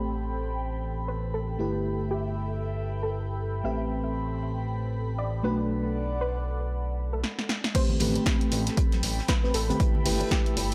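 Deep house at 117 BPM in A dorian, warm and moody, with a swung sixteenth feel and a dreamy, reverb-soaked plate sound. This excerpt of a longer piece opens on an airy, breathy pad holding sustained chords, with mellow FM electric piano stabs, dark and full-bodied with chorus, phaser and delay, both pumping against the sidechain over a smooth, saturated sawtooth bass sitting up front with a touch of vibrato. From 1.1 seconds a soft, round pluck carries the melody in the background through analog chorus, cassette tape and delay, as the harmony moves through Am9, G69 and Bm7. A drum fill from a punchy, tape-warm analog drum machine at 7.2 seconds leads into the drop at 7.7 seconds, where a layered electronic kick lands up front with crash, hi-hat and snare. Beneath them sit a dry, muffled, lo-fi soul kit with a fat snare and filtered hats, plus softly played congas and bongos in a small room, both tucked into the background.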